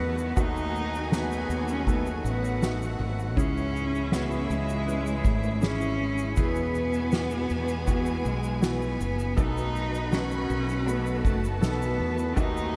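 A bowed solo cello carries the melody from the start, with vibrato and portamento. It sounds expressive yet distant despite sitting up front. Beneath it, a grand piano plays present, polished accompaniment through an analog chorus. A symphonic violin section adds a lush second line with a soft attack and a smooth top, spread through a diffuse ambient delay. A woodwind section holds sustained chords with light vibrato in a classical style. A fretless electric bass, direct and up front with ensemble chorus, anchors the low end. A soft-mallet drum kit sits in the background with a punchy kick, a fat snare and ride cymbal in a big room. A grainy, bright tube shaker joins at 0.2 seconds, close and dry. This melancholic, heartbroken pop ballad moves at 80 BPM in a straight 4/4, passing through D#dim, C#m, E and B7. A huge ambient reverb soaks the mix in a dreamy haze, and the cut from a longer piece ends at 12.8 seconds.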